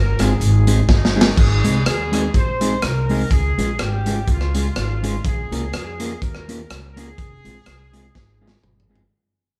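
A crunchy, saturated breakbeat kit sits up front in this upbeat, cheerful, lightly swung ska clip, its punchy kick and dark cymbals breaking into fills at 0.9 and 8.1 seconds. A woody pizzicato upright bass holds the low end beside a clean, fingered electric guitar, while a distant horn section carries the melody with light vibrato. The band plays together in a large studio room with moderate reverb, and the passage fades out from 1.4 seconds onward.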